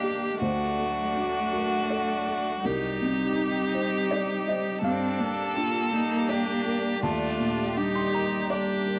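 A clear, up-front violin carries the melody with focused vibrato, over a felt-muted upright piano whose soft, dark tone comes with audible action noise, in this fragile, melancholic neoclassical excerpt in G minor, moving in a rubato 3/4 at around 82 BPM. A rich, smooth cello sings a second line beneath, a single viola adds bowed accompaniment, and a swirling sawtooth pad with phaser and chorus sits in the background, sustaining chords through D, Cm7, Gm7 and Ebmaj7 across all 9.0 seconds. The violin carries a cassette-tape character, and the whole is a home recording on cassette, heard through moderate spring reverb in a small room.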